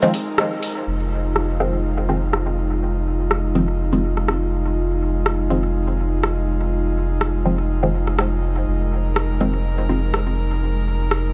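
A round, up-front sub bass anchors this hazy, hypnotic dub techno excerpt, arriving at 0.9 seconds with a fast attack and a deep, sustained low note. Before it, a short break opens the clip with a band accent at 0.4 seconds. Muted, detuned chord stabs with a plucked filter shape, phaser and dub echo sound a rootless Fm7 that settles onto a full Fm7 once the bass arrives. An airy, breathy pad with a noise layer and chorus holds chords beneath, entering on a slow attack and lingering with a long release. The electronic deep house kit keeps a lightly swung pulse of dark, low-pass filtered hi-hats and rim clicks, with dub echo on the drums, while light reverb and a digital ambience surround the mix and the stabs drop away at 10.0 seconds.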